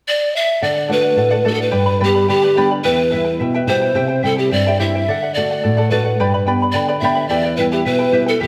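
A straight 2/4 pulse at 108 BPM carries this wistful yet festive Andean folk excerpt, where a breathy, hollow bamboo pan flute sings the melody up front with tongued chiff and vibrato from 0.1 s, joined at 0.6 s by a shimmering, fingerpicked charango on double strings and a thumb-plucked flamenco guitar, all three ringing in a moderate recital hall reverb over chords moving through D, G, Em and C.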